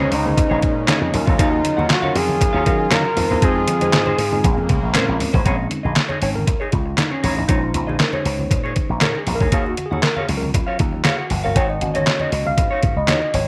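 An overdriven, detuned 8-bit drum machine sits up front in this danceable, slick early-eighties boogie funk excerpt, its thumpy kick, medium-tuned snare, hi-hat and handclaps carrying a sampler-style grit and the sound of a large room. Beneath it, a bright, punchy slap bass runs through an envelope filter, while low-tuned congas with a thin skin, played with soft hands, stay in the background. A dark, fingered semi-hollow guitar plays a clean riff with lush chorus, and a worn, slightly out-of-tune tine electric piano supplies accompaniment over minor-seventh and ninth harmony. At the opening, a smooth, expressive sawtooth lead glides with portamento and vibrato over a brassy, nasal analog pad that swells in softly behind it. The lead ends at 5.2 s and the pad at 5.4 s, and from 5.5 s the electric piano takes a solo that runs to the close, the whole mix set in a moderate spring reverb.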